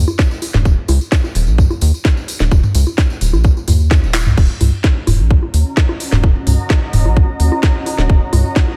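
A rubbery, hollow square-wave bass pumps with sidechain from the first moment of this sparse, cool minimal techno cut in Eb minor at 129 BPM, joined by a tight, up-front electronic kick, a tape-warm garage kit with cracking snare, crisp hats, handclaps and crash, analog electronic bongos and toms with delay, and a bright, jingly tambourine that stops at 4.4 seconds after a drum fill at 4.1, before a blurred, detuned granular cloud pad with built-in reverb and its own sidechain pumping drifts in at 5.3 seconds over an Ebm7 chord in an otherwise dry mix.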